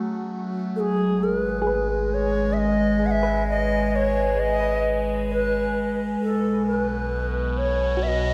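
An airy, reedy shakuhachi carries the melody up front from the start, its bright straight tone trailed by a diffuse ambient delay, above a detuned, morphing wavetable pad treated with phaser. This melancholic, spacious ambient passage moves at 66 BPM in 3/4 through F#m, G#m and B5. A deep sine sub bass enters at 0.8 seconds, and a soft, round pluck plays dark arpeggios from 1.6 seconds, set in the background under lush chorus and delay, all within a dreamy mix soaked in wet plate reverb.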